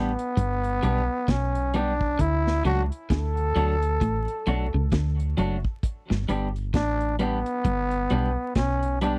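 This short cut from a longer roots reggae piece has a dry, close 1970s-style studio sound with a layer of vinyl crackle, and its mood is meditative and serious. A growling trombone carries the melody up front, its raspy, gritty tone sharpened with vibrato and scooped notes. Beneath it, a clean, twangy electric guitar plays the accompaniment close to the listener, while a deep dub fingered bass adds a dark, round, foam-muted low end. The dry drum kit enters at 0.2 seconds with a tight kick, a medium-tuned snare and hi-hat, played with a swung sixteenth-note feel. From 0.4 seconds, a second clean guitar sits in the background and plays a low riff coloured by lush chorus, as the harmony moves from G to D and back to G.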